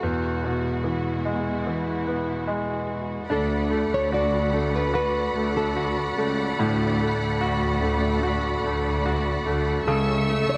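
A bright, polished concert grand piano carries the accompaniment in this longing, heartbroken pop fragment at 73 BPM, while a thumb-plucked nylon-string guitar sings the classical-toned melody above it. Lush, woody studio strings hold sustained chords in the distance, and at 3.3 seconds a veiled, con sordino cello section enters up front on the bass. Light reverb and small room ambience frame the harmony as it moves from Eadd9 to D6 and then A/C#, with tuning set to A4 = 436 Hz.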